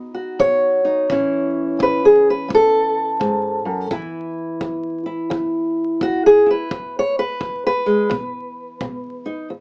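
A swung 4/4 feel carries this gritty, swaggering excerpt of acoustic country blues, where an up-front, fingerpicked old ladder-braced guitar with dark, boxy old strings plays the melody across the full clip while a soft, punchy kick drum with brushes sits underneath from 0.4 seconds, all in moderate studio reverb colored by vinyl crackle and a small-speaker sound, moving from B and A to an E5 chord before the harmony falls away at 8.1 seconds.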